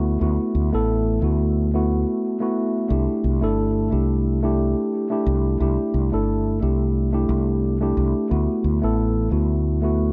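A dark, warm production with light reverb and a digital ambience frames this blissful sunset chillout fragment in D mixolydian, moving at 89 BPM in 4/4 with a gentle swing on the sixteenths. A mellow, clean tine electric piano sits up front with tape echo, moving from D69 to C6 at 2.9 seconds and back to D69 at 8.3 seconds. Beneath it, a round, amped fretless electric bass anchors the low end for the full 10.1 seconds.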